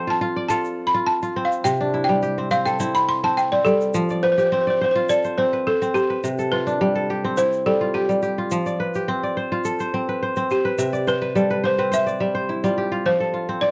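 West African traditional string and xylophone music in F lydian, this flowing, warm excerpt moves at a straight 105 BPM in 4/4 over an alternating F and C harmony. A woody, buzzing balafon played with hard rubber mallets carries a dark, smooth melody, while an up-front fingerpicked kora rings out crisp arpeggios beneath it and adds a fill from 10.8 to 13.1 seconds. A grainy, bright egg shaker sits close in the background from 0.5 seconds, all captured in a dry, close 1970s-style studio sound with light reverb and small room ambience.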